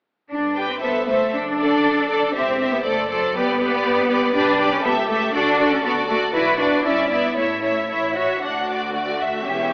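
A cello section and a double bass section open this quick, cheerful classical-period movement for string orchestra at 0.3 seconds, the cellos focused and up front with a smooth top, before a lush first violin section takes the melody at 0.6 seconds in a lively, rubato 2/4 at 119 BPM. Beneath it, a darker second violin section adds a vibrato-laden line with portamento, while the violas supply smooth, even accompaniment as the harmony moves from G major toward D major at 4.4 seconds. The whole is set in a reverberant recital hall yet filtered to a thin AM-radio sound, a brief cut from a longer piece.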